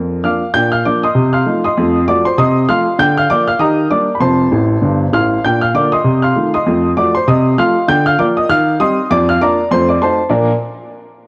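Stride piano jazz in Bb major, playful and swinging at 196 BPM, played on a woody, natural-sounding upright piano that sits up front with cassette tape coloring and a lush hall reverb, spanning F1 to G6 through a brief fill at 4.5 seconds and a turnaround that resolves to Bb at 10.3 seconds in this short cut from a longer piece.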